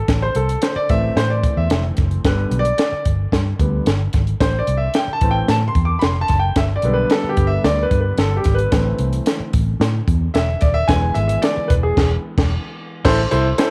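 A concert grand piano opens the recording at 0.0 seconds, up front and natural in tone with a deep low end, carrying an uptempo 1960s-style soul groove in a straight four that feels driving and passionate. The piano takes the lead across the passage, moving through a minor-key cycle that alternates Am and G before turning to E and landing back on Am. A vintage fingered electric bass, foam-muted, amped and round, sits dark underneath, while a compact cocktail drum kit adds a punchy kick, a high-tuned snare, hi-hat and crash cymbal with a smooth, up-front character. Near the close, from 12.0 seconds, the band hits a shared accent, and the whole fragment, cut from a longer piece, sits in a light small-room reverb.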